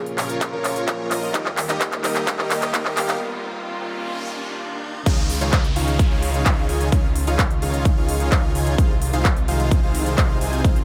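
A punchy, overdriven electronic kick leads this anthemic, uplifting festival progressive house excerpt at 129 BPM, where a huge, airy supersaw riff with a low-pass filter, delay and sidechain pumping rides over a thick, chorused detuned saw bass, crisp overdriven big-room drums with handclaps and crash, background rich bowed strings, an intimate grand piano that plays only until 3.2 s, and riser and noise sweep effects that build through a break into the drop at 5.1 s, as the chords move from Bbm and Eb to Dbadd9 and Ab6/C.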